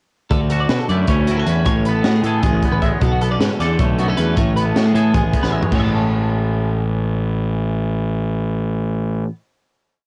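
Math rock with a midwest emo lilt, this short, bright and intricate piece moves in an odd 7/8 metre over lush seventh and ninth chords. A twangy, clean fingerstyle electric guitar plays syncopated accompaniment while a compressed twelve-string electric guitar with ensemble chorus loops a warm arpeggio ostinato, and a dark, overdriven fuzz bass sits up front with a round, punchy syncopated riff. A crisp fusion kit with a high-tuned snare and bright cymbals carries the groove in a small, pumping room with cassette grit, ending on a fill at 5.4 seconds before the drums stop and the final chord rings from 5.7 seconds in this dry, home-taped recording.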